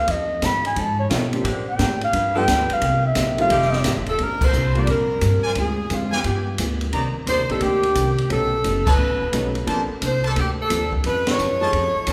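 A breathy, whispered clarinet opens this swinging, energetic big band excerpt at 175 BPM in Bb major, its dark subtone, scooped notes and vibrato carrying the melody until the saxophone section takes over at 4.1 seconds with a warm line shaded by light vibrato. Pizzicato upright bass with a woody tone, a dark, clean hollow-body guitar, a clear baby grand piano in the background and an open drum kit with dark cymbals, a high-tuned snare and a boomy kick drive the swing feel, while brilliant trumpet stabs enter at 5.4 seconds. The whole band hits accents at 8.8 and 11.2 seconds under the wet reverb of a recital hall.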